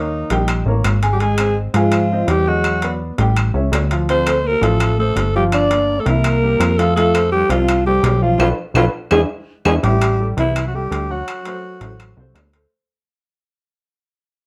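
A straight 4/4 groove at 167 BPM drives this sunny, danceable slice of Afro-Cuban jazz, with ringing, compressed metal-shell timbales entering at 0.3 seconds and woody claves sitting in the background of a moderate club reverb. Up front, a punchy, funky analog bass built from sawtooth and square waves with ring modulation delivers fast-attack, decaying plucks in the low register. A raspy, close-miked alto saxophone carries the melody with a gritty growl and vibrato, while a dark, breathy trombone with a smooth top and light vibrato plays a second line further back. A natural-sounding upright piano with short sustain fills out the accompaniment over jazzy changes that move from Eb7 through Em9, Dm7 and Fadd9. A band accent and a drum fill lead into a fade-out beginning at 9.8 seconds, as the harmony shifts to Am7 and D7 in this fragment cut from a longer piece.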